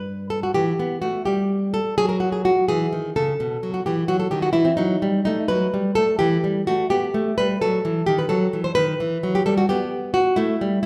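A solo nylon-string guitar carries this serene, flowing baroque-style dance, fingerpicked with a bright, small tone that sits up front. The piece is in E minor and 12/8, moving at about 85 dotted-quarter beats per minute with a rubato feel, and the guitar is tuned to A4 = 441 Hz. Its range stretches from G2 to B#4 as the harmony passes from an opening G through F#5 and B7 to a rootless E minor. A diminished D# chord at 7.6 seconds leads back to a settled E minor at 9.0 seconds. The sound is wrapped in the wet reverb of a recital hall in a church or concert space, giving each note a graceful tail in this brief excerpt cut from a longer piece.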